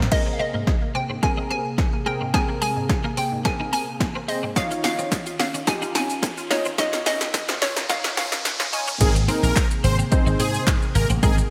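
A punchy analog drum machine with gated reverb drives this upbeat, summery dance-pop excerpt at 108 BPM in Ab major, where a hollow, bouncy square pluck carries the melody over a clean, picked twelve-string electric guitar riff, round analog keys, a shimmering pulse-width pad, squelchy resonant blip arpeggios, a very quiet riser and a grainy egg shaker through the build-up, until the drop at 9.0 s brings huge, airy supersaw chords and a bright, sidechain-pumped slap bass with an envelope filter, all set in a lush hall reverb with bright 1980s-style digital production.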